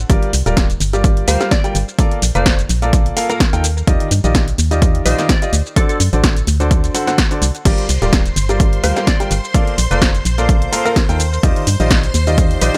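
Piano house at 127 BPM in G minor, energetic and bittersweet, where a clear, woody upright piano riff with audible action noise and digital delay pumps against an overdriven electronic kick up front, a punchy analog drum machine with crash, hi-hat, shaker and snare, and a hollow, organ-like FM bass, while a glassy wavetable pluck with chorus sits in the background and shimmering string-machine violins enter at 7.7 seconds over a Gm7, Bbmaj7, Ebmaj9 and D7 progression in a dry mix.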